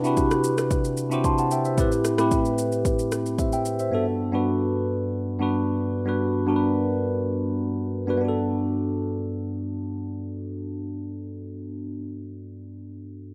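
A relaxed amapiano passage at 112 BPM in G major opens with a bright, bell-like tine electric piano colored by phaser, moving through Cmaj9#11, Am7 and Gmaj7, alongside an up-front, overdriven deep house kit of deep kick, rim click and shaker that drops out at 3.9 s, leaving the piano alone until 13.3 s in a rough home-demo mix with light digital reverb, cut from a longer piece.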